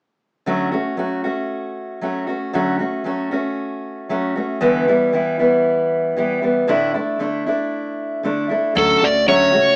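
A straight, steady 4/4 pulse carries this sunny, heartfelt pop excerpt, opening on an up-front fingerpicked steel-string acoustic guitar that moves through Dmaj7, G6 and Asus4 chords from 0.5 seconds. At 8.8 seconds, as the progression returns to Dmaj7, an overdriven electric slide guitar enters up front with the melody, while a woody, thumpy pizzicato upright bass sits low in the background. The band sounds as if playing live in one room, with moderate studio reverb and a small-speaker character.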